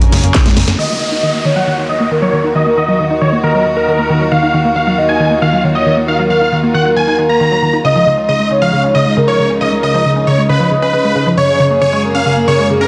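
A straight 4/4 pulse at 136 BPM opens this bittersweet, emotional uplifting trance fragment in Eb minor. A techno drum kit with a cracking snare, handclaps and hi-hat plays a fill over a punchy sawtooth sequencer bass, and both hit a band accent at 0.7 seconds before dropping out at 0.8. From there a huge, euphoric supersaw lead carries the melody with a filter sweep and delay, joined by a velvety, mellow second lead with chorus, vibrato, delay and a cassette-tape tint, while a round analog pluck with chorus and delay keeps up its arpeggios under its own filter sweep and a dark, reedy chamber string section holds gut-toned chords; the strings, pluck, bass and supersaw lead pump to the sidechain. A faint electronic downlifter passes through early on, and a lush hall reverb and a dense, heavily limited master frame the chords as they move from Ebmadd9 to Dbadd9 and back to Gbadd9.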